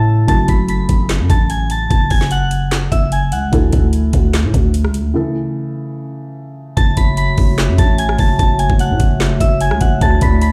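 Menacing and brooding, this half-time trap excerpt sets a soft, warbling FM bell melody with chorus, phaser and digital delay over a felt-muted upright piano that plays until 6.8 seconds, a growling, buzzy 808-style bass and an up-front trap kit of knocking kick, woody snare, metallic hats, claps and rim clicks, before an ethereal glass harmonica joins with sustained chords at 6.8 seconds, all heard as if through a big sound system in a bare room with large studio reverb.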